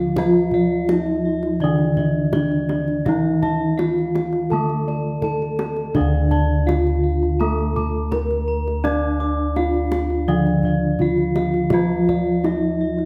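Set in a moderate recital-hall reverb, this hypnotic, stately Javanese gamelan passage in D pelog at 83 BPM, cut from a longer piece, layers a mellow, shimmering bronze metallophone melody struck with padded mallets and touched with tape echo over a boxy, horn-mallet metallophone accompaniment and a bright high metallophone arpeggio line, while dry, up-front bossed gongs carry a round, full bass, softer dark gongs trace arpeggios in the background from 0.2 s, and a tight kendang played with soft hands keeps the pulse.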